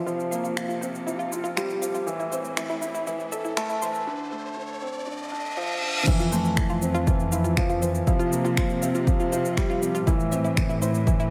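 Hopeful and luminous, this piano and strings electronica excerpt moves at 120 BPM in F major, with a soft, felt-muted upright piano riff up front, its action noise audible beneath digital delay and shimmer reverb, over a smooth bowed cello section whose bass line carries vibrato and sidechain pumping. A bright, nasal analog pluck spins arpeggios in the background through chorus, phaser, delay and shimmer, while a layered deep house kit of crash, finger snaps and shaker keeps time and a filter sweep builds toward a riser and reverse cymbal. At 6.1 seconds the drop arrives on an Fmaj7 chord with a punchy electronic kick, all set in a moderate concert hall reverb.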